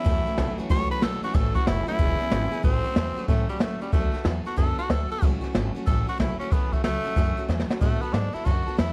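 A raspy, gritty tenor saxophone opens this retro, rollicking rockabilly clip with a solo full of scooped notes and vibrato, close-miked and edgy. Beside it, a bright, full-bodied steel-string acoustic guitar picks out the accompaniment, while a twangy electric guitar through a small old amp plays a slightly broken-up riff in the background until 2.6 seconds. The upright bass has a woody, thumpy pizzicato sound from its gut strings. A dark, smooth brush drum kit sits up front with a boomy kick, a medium-tuned snare and dark ride cymbals, and adds a short fill at 7.5 seconds. The swung groove moves through chords of A6, E6 and D6, and light reverb gives the whole a studio-room feel.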